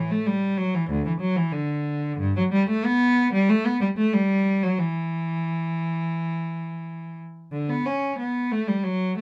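Radiant and flowing, this short passage cut from a longer piece sounds like a baroque-style suite movement for unaccompanied cello. A single bowed cello plays alone for the full 9.2 seconds, moving in 4/4 at around 86-95 BPM with a rubato feel that lets the line breathe. Its tone is rich and smooth, with vibrato and an even delivery across a range from D2 to C#4. The instrument sits up front yet carries a slightly distant quality, caught by close, detailed microphones and softened by light reverb.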